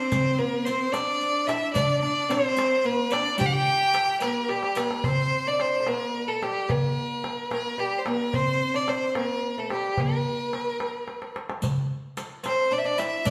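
Arabic maqam ensemble music in G maqam rast, festive and stately at 73 BPM in a straight 6/8, cut from a longer piece. A clear, biting bowed violin sits up front carrying the melody over a mellow, woody double-strung oud and a focused vibrato cello that drops out at 4.4 seconds, while a clay-shelled darbuka and a riq with dark, saturated jingles drive the rhythm, the riq falling silent before 5.0 seconds and returning at 11.6 seconds after a drum fill, the ensemble playing live together in a stone room with a 1.2-second wet reverb.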